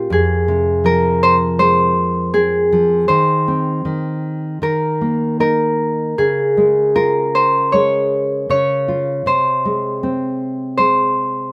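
A light reverb gives this short recording a soft sense of space, with both instruments sitting up front. It is a tender, gentle children's lullaby in 4/4, played with a flexible, rubato feel and cut from a longer piece. A Celtic harp carries the melody in a narrow middle register, its fingerpicked notes bright and ringing. Beneath it, a nylon-string guitar provides fingerpicked accompaniment with a warm, full-bodied, deep classical tone, reaching from low bass notes up to just beneath the harp's range. The harmony moves from Fm through Cm/Eb and Eb5 to Db before settling on Ab/C, and both instruments play together throughout the 11.5 seconds.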